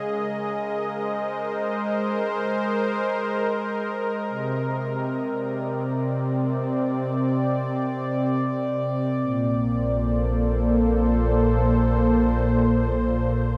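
Weightless and warm, this ambient excerpt from a longer piece floats in free time in Bb major. An analog pad carries it from the opening, sitting up front with sustained chords built from detuned sawtooth tones that arrive with a soft attack and a smooth, mellow character, thickened by chorus and a shimmer reverb. The harmony drifts from Abadd9 to Cm7 and settles on Bbmaj7 at 9.2 seconds. There a sine sub bass enters on a low Bb, deep and round with a fast attack, holding until the close at 13.6 seconds. The recording sits in a huge, wet ambient reverb with a long tail of 8.4 seconds.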